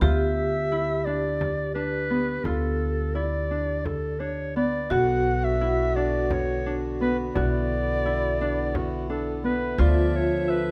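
Urgent and hypnotic, this passage from a longer contemporary chamber piece moves in 7/8 at 172 BPM. An up-front, dark clarinet carries the melody in a jazz style, with subtone, vibrato and scooped notes, over ringing, thumb-plucked Celtic harp arpeggios and a metallic vibraphone second line with medium motor vibrato. Beneath them sit a thumpy, woody gut-string pizzicato upright bass and a close, dry frame drum in the background, while a reedy, breathing pedal harmonium adds full sustained chords from 4.9 s as the harmony moves between Dmadd9 and Bm under light reverb.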